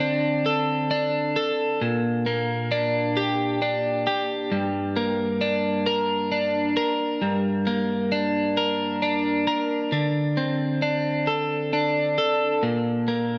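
Cathartic yet melancholic, this short rock fragment in a straight 6/8 rests entirely on a lone twelve-string electric guitar. The picked guitar sounds bright and clean, with a compressed, up-front presence across its range from low G2 to Bb4. A slapback echo and analog delay trail its notes, while a lush, wet hall reverb and digital ambience give the recording a big arena scale. The harmony moves from a D5 through Bb6 and settles on G minor at 4.5 seconds before returning to D5 and closing on Bb near 12.6 seconds. The guitar plays throughout the 13.4-second passage, which feels lifted from a longer piece.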